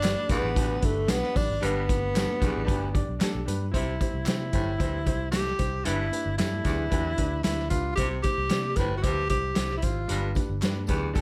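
A straight 4/4 groove at 113 BPM drives this danceable, warm slice of uptempo 1960s-style soul in C major, cut from a longer piece. Up front, a vintage acoustic drum kit with a punchy kick, medium-tuned snare and hi-hat sits in a small, pumping room with its top rolled off. Beneath it, a dark, round, foam-muted fingered electric bass plays through an amp. A breathy tenor saxophone carries the jazz-style melody up front with a soft attack, vibrato and scooped notes until 10.4 seconds, while a raspy, gritty baritone saxophone enters at 0.3 seconds with a clear pop-style riff that sounds distant and roomy. A present grand piano with long sustain supplies the accompaniment as the harmony moves between G and C, with a change at 3.7 seconds. Group handclaps with tambourine and a tube shaker stay in the background, very quiet, high-tuned congas played with soft hands ring out, and a light reverb sits over the mix.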